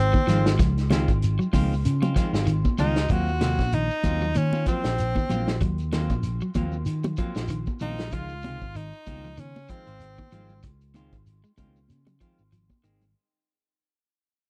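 An edgy, forceful tenor saxophone solo rides up front with light vibrato over a dark, round fingered electric bass at the start of this defiant, hypnotic afrobeat excerpt with a swung sixteenth feel; a slightly broken-up electric guitar picks arpeggios in the background, a roomy, distant soul drum kit with a tight kick and rolled-off top sits up front, bright, damped congas and a grainy shekere add percussion, and a clean electric guitar adds stabs through spring reverb, all over chords moving from Dbmaj9 to Ebm69 and back, with the saxophone dropping out at 10.6 s as the mix fades out and a drum fill arrives at 12.7 s.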